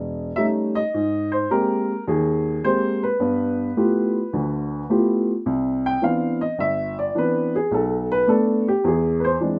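A woody upright piano with long sustain sits up front in a moderate club reverb, playing a playful, relaxed, swung solo jazz passage in 4/4 whose chords move from A7#11 through Abmaj9 and G13 before arriving at Cmaj9 at 5.5 s, where its solo stretch runs on through Bm7 and Eaug7 until this short cut from a longer piece ends at 9.6 s.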